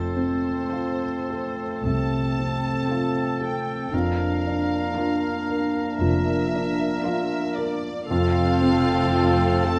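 Classical, lush and lyrical with a rubato 4/4 feel, this passage puts an intimate, dark grand piano with audible action noise up front beside a smooth violin section melody, while a clarinet and an oboe carry second lines, a mellow French horn section holds soft-edged chords, a distant, expressive second violin section and a very quiet, rich viola section enter at 0.7 seconds, cello and double bass sections give a focused bass, and barely audible hard-mallet timpani sound only until 1.2 seconds, set in a moderate concert hall reverb over F and Bb/F harmony.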